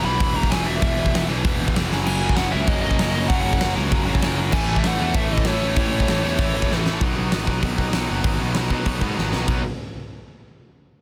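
A dense, heavily limited and nearly dry mix carries this rowdy, rebellious punk rock cut at 194 BPM in B major, where a biting lead guitar sings a high melody until 6.8 seconds over a double-tracked distorted guitar riff and a tight distorted guitar in the background, a growly fuzz picked bass and a big, up-front drum kit with a fat snare and punchy kick, while a cranked stack guitar joins at 2.1 seconds and a drum fill marks the shift at 7.0 seconds.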